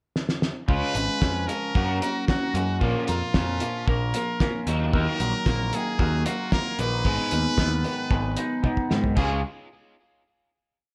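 A brilliant, forceful trumpet carries a scooped, vibrato-laden motif over this upbeat yet wistful indie rock piece at 113 BPM in Db mixolydian, where a cloth-damped, thuddy drum kit opens with a fill at 0.2 s and then drives a fat-snared indie four groove, an overdriven guitar chugs palm-muted eighth notes through analog chorus and digital delay, a twangy clean guitar picks arpeggios with subtle chorus, and a growling overdriven bass plays a syncopated riff, all through the worn warble of old cassette tape until the band lands on a final Db chord at 9.2 s.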